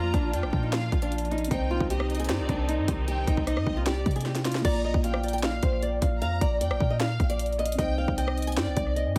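Menacing and eerie, this half-time trap cut at 153 BPM sets a fingerpicked flamenco guitar melody, colored by analog delay, over a booming sine-like 808 bass and an up-front, overdriven trap kit with a hard-clipped kick, sharp snare and bright hats. A distant, focused violin section adds a bowed second line while a mellow tine electric piano sits in the background, and a lush symphonic string section holds expressive chords with vibrato and portamento until 4.6 seconds. A drum fill at 4.3 seconds marks the turn to the second half, which moves from Bb to Cmadd9 inside an echo-heavy studio reverb.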